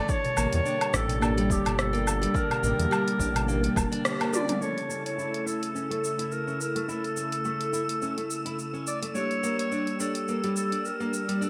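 Soaked in a wet plate reverb with a bright, 1980s-style digital sheen, this earthy organic downtempo fragment sets a distant, roomy clarinet melody over muted, felt-like synth keys, a warbling, detuned analog pad with chorus, fingerpicked nylon-string guitar arpeggios, and an airy, wind-like noise texture in the background. A deep house drum kit with dark hats, a punchy electronic kick, a very quiet clay-shelled darbuka and a smooth, up-front synth bass with sidechain pumping drive the opening, until a band accent lands at 4.0 s and a drum fill follows at 4.3 s. From 4.6 s the kick, bass and darbuka have fallen away while a filter sweep shapes the fresh-stringed guitar and the kit carries on to the end.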